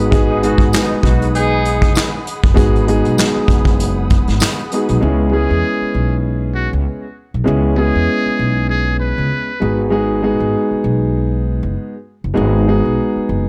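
A dark, tough boom-bap hip-hop groove with a swung feel opens on a mellow vintage baby grand piano with long sustain and a cassette-tape tint, a woody, growly pizzicato upright bass up front, and a soft, flute-like tonewheel organ holding chorus-washed chords with audible key click in the background. A vintage brush kit with a punchy kick, medium-tuned snare, hi-hat and handclaps drives the opening, while a very quiet, jingly tambourine sits close in the mix and a tight jazz-style horn section adds shadowy stabs with analog delay. At 5.0 seconds the drums and organ drop away, leaving piano and bass to carry the harmony as it moves from G#m7 to C#m7. A buzzy, breathy trumpet with a metal mute then takes a short jazz-style solo from 5.3 seconds, with scooped notes, light vibrato and analog-delay echoes. The dry, gritty small-room sound gives the whole fragment a raw, vintage character.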